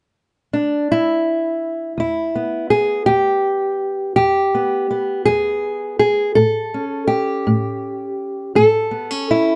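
Rolling in a slow 12/8 at 55 BPM, this gritty, rollicking acoustic country blues fragment features a lone fingerpicked old ladder-braced acoustic guitar, woody and boxy with the dark bite of old strings, sitting up front in a close, dry, detailed sound as it moves from E at 2.0 seconds to A at 6.4 seconds.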